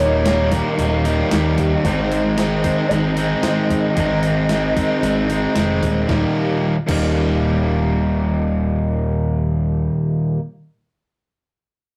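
A straight 4/4 pulse from a crisp, thumpy 8-bit drum machine with an overdriven edge drives this wistful, hazy shoegaze and dream pop fragment, its kick, snare, hi-hat and crash falling away at 7.0 seconds. Up front, a bright, crunchy overdriven guitar riff sits atop a hollow-body overdriven semi-hollow guitar riff in the background, a dark, very quiet clean electric guitar playing fingered arpeggios, and a direct picked electric bass. A reedy, woody FM lead with chorus and vibrato carries a soft-attack melody in the background until 5.5 seconds, while a silky, phased string machine holds faint chords only for the opening 1.8 seconds, the whole mix set in a rough rehearsal-room sound with saturation and moderate reverb.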